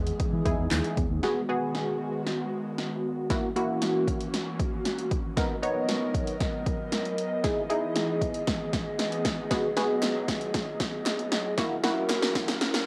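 A funky polysynth comp sits up front in this bittersweet yet confident dance-pop excerpt at 116 BPM in G# minor. Its sawtooth-and-triangle tone, with a sub octave and a filter pluck, sounds mellow through chorus and pumps with sidechain. Alongside it, also up front, an airy, breathy pad holds sustained chords with a slow attack, a detuned noise layer and a moving notch, also pumping and coloured by cassette tape. A punchy analog drum machine drives kick, snare, hi-hat and handclaps with overdrive, while a dark, round, foam-muted electric bass plays only at the opening before stopping at 1.2 seconds. From there the track moves into a long build-up with a drum fill and filter sweep over G#m7, F#7, Bmaj7 and Emaj7, and a very quiet, crisp group handclap joins from 10.0 to 12.2 seconds, all framed by moderate reverb and a lo-fi home cassette character.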